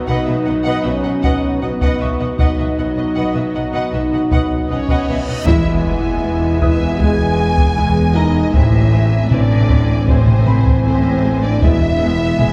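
A cinematic hybrid orchestral and electronic film score, futuristic and vast, opens on a thick, detuned synth pad with chorus and mellow French horns holding chords, while a very quiet, brilliant baby grand piano adds texture and bowed strings settle in: violins on a second line, violas in accompaniment, and rich cellos and double basses anchoring the low end. Close, heavy-stick taiko drums enter at 1.2 s, an expressive violin melody with vibrato emerges at 4.7 s, and a huge, dark reverse cymbal leads into an impact at 5.5 s as a very quiet trombone section joins the sustained chords. The recording sits back in a wet scoring-stage reverb.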